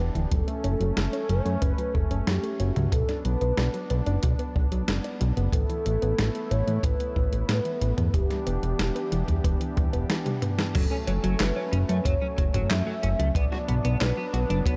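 A straight 4/4 pulse drives this moody, cinematic synthwave excerpt, with a boomy acoustic kick in a small room joined by an overdriven 12-bit drum machine supplying handclaps, hi-hat, a medium-tuned snare, toms and crash cymbal. A fat, thick analog bass sits up front, built from detuned sawtooth and square waves with ring modulation and a filter sweep. Above it, a smooth, warbling vintage pad holds sustained chords with chorus and sidechain pumping, while a soft, nasal pluck plays mellow arpeggios in the background through chorus and digital delay. A velvety synth lead carries the melody with unison detuning, vibrato, chorus and delay, moving through a progression of F#m, Bm, Asus2 and Em7. After a drum fill at 9.8 seconds, a clean, compressed, picked electric guitar enters at 10.7 seconds with a riff colored by analog chorus and digital delay, all set in a dark production with light reverb.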